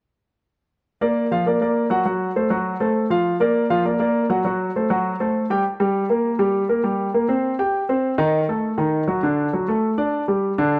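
The rhythm runs in a straight 4/4 at a brisk 201 BPM, giving this short Latin fragment, cut from a longer piece, a danceable, driving feel. A concert grand piano plays solo from 1.0 to 10.8 seconds, spanning D3 up to G5. Its tone is warm and polished, with a deep bass end and short sustain, and it sits present and up front, touched by an analog delay. The opening passage moves between F#maj7#5 and F#dim chords, then at 5.6 seconds a second section shifts through Gm, C5, Adim and D. A moderate studio reverb with a short decay places the piano in a studio room.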